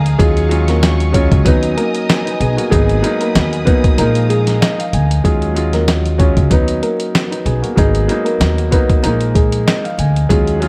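A dusty, sampler-style drum kit sits up front in this gritty, reflective boom-bap hip-hop excerpt, its thumpy kick, medium-tuned snare and hi-hat compressed and re-recorded in a large room at 95 BPM with a light swing. A woody pizzicato upright bass with gut strings holds down the low end just as prominently, moving through an Eb minor progression of Ebm11, Bmaj7/D#, Abm7 and Bb7sus4. A dark, mellow upright piano carries the melody, slightly detuned and vintage in tone, while an intimate concert grand piano supplies accompaniment with audible action noise and deep bass, both softened by filtering. A lush, bowed studio string section adds sustained chords with vibrato until 5.2 seconds, and the kick drops out from 4.0 seconds to 5.2 seconds before the second section begins. Vinyl crackle hangs over the whole recording, lending it a gritty surface.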